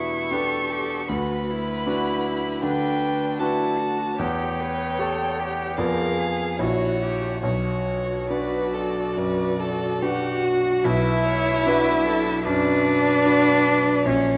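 A rubato 4/4 pulse drifting between 69 and 79 BPM carries this solemn, melancholic slow movement for piano quartet in B minor, cut from a longer piece: a smooth, vibrato-laden violin sings the melody over a dark, airy sul tasto second violin and a rich, even cello line, while a clear, up-front concert grand with deep bass and audible action noise supplies the accompaniment, all four parts sounding throughout the 14.4 seconds as the harmony moves from Em7 through diminished colours to settle on Bm, set in a moderate scoring-stage reverb with a layer of vinyl crackle.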